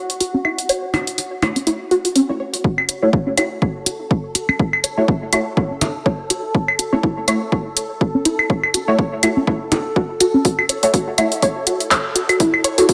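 Minimal techno at 123 BPM in F# minor with a 16th-note swing and a clinical, quirky mood, built on a swarming, nasal drone with its own reverb and sidechain pumping, a punchy, tape-warm analog drum machine of handclaps and hi-hat, a squelchy resonant blip pluck riff with phaser and dub echo, claves and percussion blips through tape echo, and muted, deep dub chord stabs with phaser, chorus and tape echo, before an up-front electronic kick enters at 2.6 seconds and the harmony moves from F#7(no3) to F#m7 as a filter sweep on the synth arpeggio builds through the rest of this cut from a longer piece, all set in a lush hall reverb.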